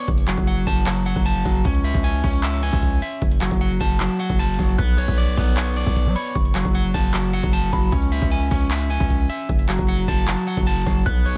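An electric guitar at the edge of break-up opens this short cut from a longer hip hop and trap piece, its twangy, picked arpeggios carrying a tape echo over a hard-hitting, melancholic half-time groove built on a booming analog drum machine with deep kick, metallic hats and handclaps, and a distorted 808-style bass that is heavy and saturated with a noise layer. A delicate, tinkling synth tine bell with chorus, phaser and tape echo enters quietly as a second line at 4.8 seconds, drops out at 7.9 seconds and returns briefly at the end, as the chords move among F#m, C#m and Bmadd9. The sound is dry and close, with the drums and guitar up front.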